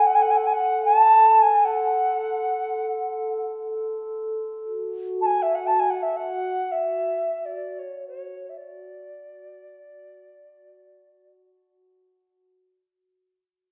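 Free-time pulse sets this calm, spacious world-meditative passage afloat, a short section cut from a longer piece and tuned to A4 = 439 Hz. An alto ocarina carries the melody between C#5 and A5, its clay tone pure and tongued, with vibrato, sitting up front yet with a distant quality. Beneath it, a glass harmonica holds a quiet, ethereal texture from F#4 to A4, its glassy notes arriving with a slow attack and a beating shimmer inside a boxy small-room character. The whole is bathed in a wet recital hall reverb with a 1.4 s decay, and the production is dark, rolling off everything above 10.8 kHz. The music fades out across its length, the ocarina falling silent at 11.3 s and the glass harmonica lingering until 12.5 s.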